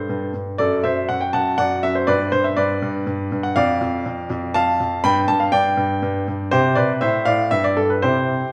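A polished, up-front baby grand rings out in a recital hall with a generous wash of reverb, giving this short excerpt from a classical-period sonatina a clean, present sound. The solo piano moves gracefully in three-time with a playful, straight feel, spanning from F2 up to B5 as the harmony passes from Am7/G and D7/F# through G, Dm/F and open fifths to F/A. At 7.5 seconds the chords fall away, and the piano carries on unharmonized through the final second of the excerpt.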